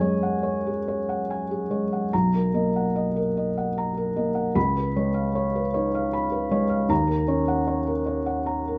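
A felt-muted upright piano plays alone from the first moment in this reflective, intimate neoclassical minimalist fragment, moving in an unhurried rubato 3/4 at around 70-78 BPM and tuned to A4 = 435 Hz, its dark, thick-felt tone sitting up front in a moderate stone-room reverb as it passes through Gbsus2, Bmaj7, Db7 and Ebm7 over 8.8 seconds.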